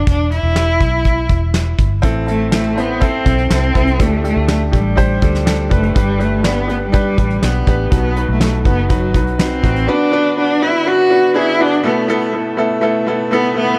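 A dark, warm studio sound with light reverb frames this driving, earnest fragment of piano-driven pop at 122 BPM in straight 4/4. A bowed cello carries the melody up front with expressive vibrato and portamento, over a round, punchy foam-muted electric bass and a soft brush kit with a fat snare and tight kick, while a bright, woody upright piano joins at 2.0 s. At 9.9 s the bass and drums stop, and a smooth tonewheel organ with subtle chorus sits in the background as the chords move to Bm and Esus4.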